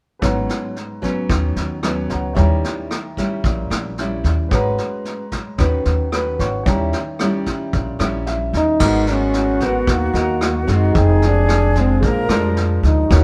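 A dark, punchy trombone with light vibrato takes the melody at 8.6 s, joined at 8.8 s by a distant, airy flute on a second line, in this wistful, smooth bossa nova at 112 BPM in G# minor, where warm fingerpicked nylon-string guitar, a woody pizzicato upright bass up front, and a brushed drum kit with dark cymbals and a tight kick carry the groove, while a natural-sounding grand piano sits in the background and adds a fill at 8.0 s, the band playing live in one room with light reverb in this section cut from a longer piece.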